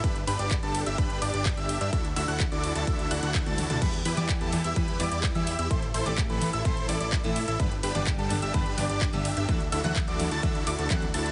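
Euphoric and anthemic, this festival progressive house excerpt moves in a straight 4/4 feel over a G, Dadd9, Em, Am progression. Huge, lush supersaw chords carry the riff up front, while a punchy, catchy plucky unison lead spins bright arpeggios above them; both share cassette-tape colour, digital delay and sidechain pumping. A fat, saturated analog bass anchors the low end with filter-plucked notes that also pump with the sidechain. A punchy electronic kick sits up front, joined by a layered house kit of metallic hats, handclaps, ride, crash and toms, with a drum fill from 3.5 to 3.8 seconds. At 3.8 seconds a full-bodied picked steel-string acoustic guitar enters as accompaniment, finger squeaks audible through its delay and pumping. The whole mix has light reverb and a heavily compressed, radio-like sound, with nothing above 10.3 kHz.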